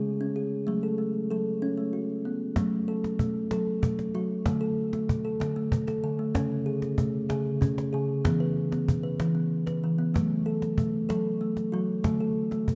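In a slow, straight 6/8 at 63 beats per minute counted in dotted quarters, this meditative world piece for tuned percussion unfolds gently in F# minor. A kalimba opens alone with arpeggios spanning C#3 to B4, its woody, ringing tone sitting up front with a smooth, thumbnail-plucked character. At 2.6 seconds a snappy acoustic cajon with snares joins, struck with hard hands and close-miked so it also sits forward in the mix. Together they drift through a harmony built on F# minor with D5, C#5 and E5 chords, settling back to F# minor at 10.2 seconds. The whole passage is bathed in a wet echo-chamber reverb with a 1.8-second decay, and the production leans dark and warm. This is a short excerpt cut from a longer piece.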